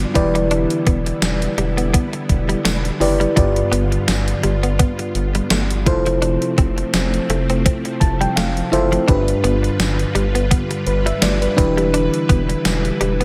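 A digital ambience frames this glossy, uplifting 1980s-style pop clip, cut from a longer piece and moving at 84 BPM in 4/4 with a light 16th-note swing in G mixolydian. Up front, a mellow FM electric piano carries the accompaniment with a soft, round, slightly dark tone, a touch of noise and chorus, and it plays a fill between 7.7 and 9.1 seconds. Beside it, an electronic, sampler-style drum machine punches in at 0.2 seconds with an overdriven sound, a thumpy kick, a gated-reverb snare, hi-hat and tambourine. A deep analog bass with a warm, evolving square-and-sine character anchors the low end, while a vintage string machine voicing violas sustains warbling sawtooth chords under an ensemble chorus. In the background, a direct-recorded clean electric guitar picks a compressed, scooped riff with subtle chorus and digital delay, as the harmony moves from Em7 through G7 and Fmaj7 before returning to G7 and Em7.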